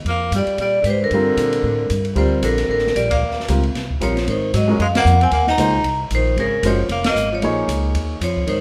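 A ringing, airy vibraphone carries the melody over a woody pizzicato upright bass and a raspy, growling tenor saxophone second line, with dark cymbals from an open jazz drum kit, an intimate grand piano joining at 1.1 s with audible action noise, and band accents at 3.1, 4.9 and 7.0 s, giving this modal jazz swing a spiritual, open mood in a large studio reverb.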